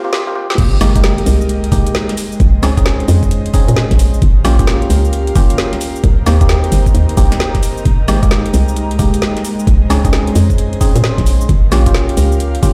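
UK garage in a soulful, bouncy two-step groove with a swung shuffle, opening on a short drum fill from the woody-snare, metallic-hat garage kit before the drop lands at 0.6 s with a knocking electronic kick, an up-front hollow FM bass and a background impact. Dark, organ-like percussive stabs with chorus and digital delay carry minor eleventh and seventh chords, while an airy, breathy pad with 12-bit sampler grit and sidechain pumping sits softly behind them. From 2.1 s a nostalgic, warbling lo-fi pad with phaser and reverb joins in the background, and the whole mix rings through a large studio reverb as if played on a big sound system in a bare room.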